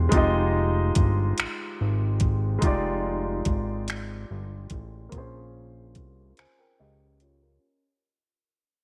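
A clear grand piano with a deep bass register, softened by a low-pass filter and a filter sweep, opens this yearning, late-night excerpt of slow six-eight R&B at 48 BPM, together with a fat, saturated analog bass whose sawtooth edge carries sustained notes. Electronic drums join almost at once with finger snaps, metallic hats and a knocking, tape-warm kick, with piano, bass and drums all up front in light reverb as the harmony moves from Fm9 to Bbm9 at 5.1 seconds. The passage fades out throughout, and a break arrives at 6.4 seconds before it is cut off.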